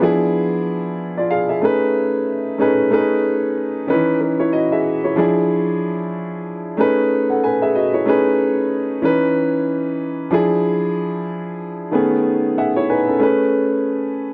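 At 93 BPM in 4/4, the sixteenth notes carry a gentle swing that gives this short soul excerpt an unhurried, rolling feel. A solo baby grand piano carries the whole piece, its warm, open tone sitting up front with a long sustain across a range from D#3 to G#5. The harmony cycles through rich extended chords, E7b9, Amaj9#11 and C#m9, creating a bittersweet, silky mood as the progression repeats. At 12.3 seconds the piano adds a brief fill that leads into a closing Amaj9 at 13.2 seconds. A moderate echo chamber reverb surrounds the instrument, lending the piano a soft halo of space.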